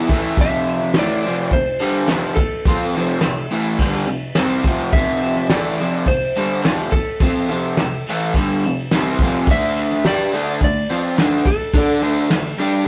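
A crunchy, double-tracked overdriven guitar riff opens this swaggering, gritty garage rock excerpt at 106 BPM in 4/4, joined at once by a dark, up-front brushed drum kit with a fat snare and punchy kick, a slightly broken-up, compressed slide guitar melody, and crisp, distant handclaps from 1.0 s, in a rough rehearsal-room recording with moderate reverb and saturation as the chords shift from F5 to D5 at 9.5 s.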